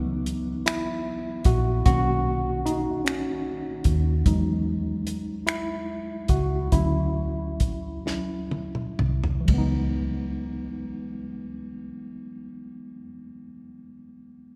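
A slow six-eight R&B groove at 40-50 BPM sways in C# dorian with a yearning, sultry mood, moving from C#m11 through Bmaj9, Emaj7 and Dmaj9 before returning to C#m11 in this cut from a longer piece. A worn, slightly out-of-tune tine electric piano, lightly overdriven through its built-in speakers and placed up front, takes the lead over a dark, round, foam-muted fingered electric bass with a punchy amped tone and a dry, smooth soul drum kit of finger snaps, hi-hat, kick, ride, snare and toms, its tight kick and rolled-off top sitting close. The tempo slows from 4.3 s, a drum fill arrives at 8.1 s, and the drums drop out just after the chord returns at 9.5 s, the whole recording set in a moderate cathedral reverb from a church or concert hall.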